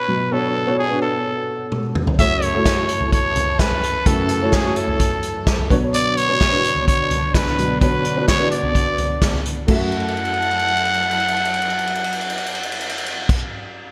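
A straight four-beat pulse underpins this bittersweet, dramatic piece of piano-driven pop, heard as a fragment of a longer work. A dark upright piano carries the accompaniment from the start, its woody, mellow tone marked by audible action noise and a chorus effect that thickens it. A growling trumpet takes the melody up front in a raspy, gritty pop style with light vibrato. An acoustic drum kit played with bundle sticks enters with a fill at 1.7 seconds, its tight kick, dark cymbals and roomy gated reverb lending it a distant, studio-room sound, and a longer fill drives the closing stretch from 9.9 seconds. A bowed string section settles in the background from 2.2 seconds with even, sustained chords. The production has a bright 1980s-style digital sheen and a lush hall reverb.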